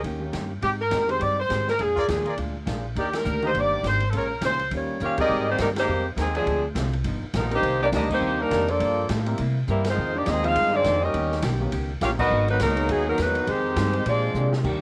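This is big band swing in E-flat major at 205 BPM, a brisk, brassy excerpt cut from a longer piece with a lively swing in 4/4. An up-front saxophone section carries the melody with vibrato and a loose, warm blend, over a woody, thumpy pizzicato upright bass. Behind them sit a distant, roomy drum kit with dark cymbals and a boomy kick, a clean, compressed hollow-body guitar, and an intimate upright piano whose action noise is audible. A trumpet section punches in with smooth-topped stabs from 2.0 seconds, and a clear trombone section adds a second line from 4.7 seconds. A bright trombone section closes on sustained chords at 14.6 seconds. Band accents and drum fills punctuate the phrases, the harmony moves through rich extended and altered chords, and light reverb with small-room ambience frames the ensemble.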